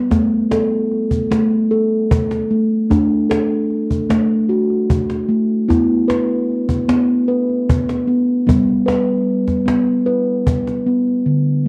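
In a straight 7/8 at 151 BPM, this dreamy, gentle world meditative excerpt sets round, ringing steel tongue drum arpeggios, struck with rubber mallets and given a close, full cassette tone, over a woody cajon played with soft hands and faint snares, both up front in light studio reverb as the harmony moves from D to E5 to G across roughly 11 seconds of a home cassette recording.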